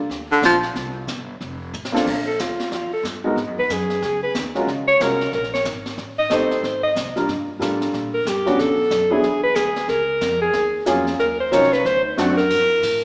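A brief breathy baritone saxophone phrase opens this moody, late-night small-group swing and bop excerpt, heard up front with vibrato, scooped notes and a whispered, intimate tone. Underneath, a woody, thumpy upright bass with gut strings and a jazz kit played with brushes, dark cymbals, a high-tuned snare and a boomy kick set a brisk 184 BPM swing in 4/4. After a drum fill, the alto saxophone takes over at 2.1 seconds with a present, subtoned solo, while a warm, natural-sounding baby grand piano comps up front alongside it. The harmony roams through rich, shifting chords, from Db69 and Gbmaj9 to Am7b5 and a turn through E7 before settling back on Gm. A reverberant hall tail surrounds the group, though the overall sound is small, like a modest speaker.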